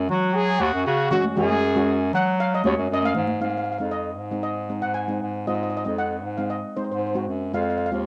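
Calypso at 117 BPM in Ab mixolydian, sunny and bouncy, cut from a longer piece: a dark, shimmering steel pan (double seconds, medium rubber sticks) carries an up-front melody and takes a solo through 3.4 seconds while a mellow, close-miked cello pan played with soft rubber sticks fills in the chords, a clear, classical-style bass clarinet plays the bass line, a present, loose jazz horn section with light vibrato adds a brief second line until 2.0 seconds, and soft-handed congas sit in the background until 3.4 seconds, all in a home cassette recording with dulled highs and a moderate spring reverb as the harmony moves from Gbsus2 to Ab and then Fm.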